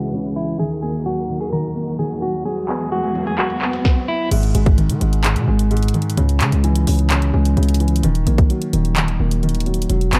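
This is a dark, melancholic trap cut from a longer hip hop piece, moving at 129 BPM with a half-time feel in G# minor. It opens on a clean, picked semi-hollow electric guitar melody dressed in spring reverb and delay, over a soft, felt-muted upright piano that sits up front and a lush, bowed string section with expressive vibrato. A filter sweep runs through the first 4.3 seconds, and a very quiet electronic riser rises from 2.0 seconds as the chords move from C#m7 through D#m to Eadd9. At 4.3 seconds the guitar and strings have dropped away, and a heavy, aggressive distorted 808-style bass enters with a fast attack and a noisy edge, anchoring the second section's G#5, C#m and D#m changes. Throughout, the trap drum kit stays up front with a hard-clipped kick, sharp snare, bright hi-hats, handclaps and crash cymbal. The production is dry, dark and filtered, with the mellow piano and snarling bass carrying the track to its close at 10.2 seconds.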